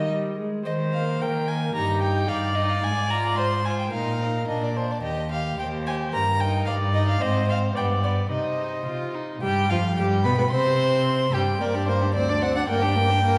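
In a straight, quick two-beat metre, this cheerful, graceful classical-period movement for string quartet has a period-style, gut-string sound, with the first violin singing the high melody and the cello anchoring the bass, both close and up front with a rich, reedy tone. Between them, the second violin adds a line touched with light vibrato while the warm viola fills in the accompaniment, all four bowed by single players throughout. The fragment darkens toward a minor colour around 7.2 seconds before a new section begins at 9.4 seconds, all bathed in the wet, lingering reverb of a church or concert hall.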